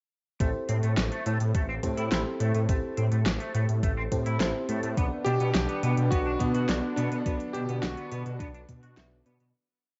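Heard through a home cassette recording with light reverb and its top end capped at 7.7 kHz, this nostalgic, driving synthwave verse moves at 105 BPM in A dorian, from Am7 to Bm. A thumpy, tape-warm machine kick and a pop kit with fat snare and crisp closed hats carry a straight 4/4 backbeat beneath a thick, octave-jumping detuned saw bass with sidechain pumping. Over it, a twangy clean electric guitar repeats a 16-step picked riff, and a dreamy FM electric piano with a soft pad layer pushes syncopated stabs through chorus, analog delay and shimmer reverb. At 5.0 seconds an airy soft supersaw pad and a very quiet, warbling pluck arpeggio in a 6-step loop join, a clangy, up-front electric grand piano enters with a motif-based melody at 5.2 seconds, and the piece fades out from 6.5 seconds.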